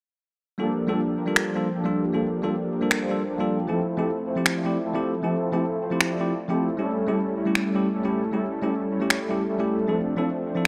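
A smooth, detuned soft supersaw riff filtered through phaser, low-pass filter and tape echo leads this dreamy, lush half-time future bass passage cut from a longer piece, with a bell-like, bright tine electric piano carrying the chords from Gm9 through Fmaj7 and A7 to Dm7 under vintage 12-bit sampler grit and tape echo, while tape-warm electronic finger snaps with studio reverb enter at 1.4 seconds and sit up front in a light reverb.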